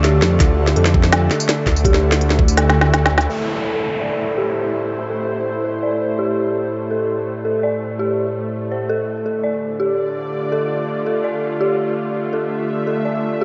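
Tense and heavy, this half-time drum and bass passage at 166 BPM in A minor is cut from a longer piece and opens straight on a drop over D minor. A nasal, string-like bowed drone holds sustained chords across the whole 13.4 seconds, carrying its own reverb and a sidechain pumping, while an eerie, inharmonic FM synth bell spins arpeggios through chorus, a low-pass filter and tape echo. Through the first 3.3 seconds a deep, rumbling detuned saw bass sits up front beside an organic electronic kit with a woody snare, smooth hats and tambourine, joined from 0.4 seconds by a layered, knocking electronic kick. A reversed, dreamy swelling texture murmurs very quietly beneath, and a drum fill closes that opening stretch. After 3.3 seconds the beat and bass fall away, an electronic downlifter descends, and a filter sweep works on the bell as the drone and bell carry on over A minor, with the harmony returning to D minor at 9.1 seconds. 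The mix has light digital ambience and a dark top end.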